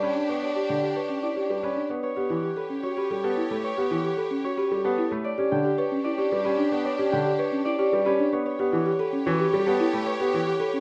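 Hypnotic and urgent, this minimalist classical pattern piece in 3/4 puts a woody, close-miked folk marimba with soft mallets up front, its round arpeggios set against a polished, short-sustained grand piano accompaniment, while a ringing, thumb-plucked Celtic harp carries the melody and a lush, bowed violin section with vibrato holds sustained chords further back, in a lightly reverberant space as the harmony moves between a rootless Em7 and A9/E.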